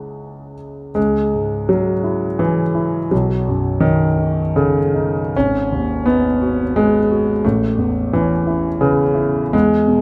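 In a rubato 3/4 that drifts between 70 and 90 BPM, this ten-second excerpt of impressionist solo piano in C# minor unfolds with a hazy, wistful mood, tuned to A4 = 445 Hz. A concert grand, intimate and up front, spans G#1 to C#6, its deep bass and audible action noise caught by close, detailed microphones as the harmony moves from C#madd9 through B9 and G#m7 to Aadd9. A moderate scoring-stage reverb of 1.9 seconds lends the natural tone a soft halo.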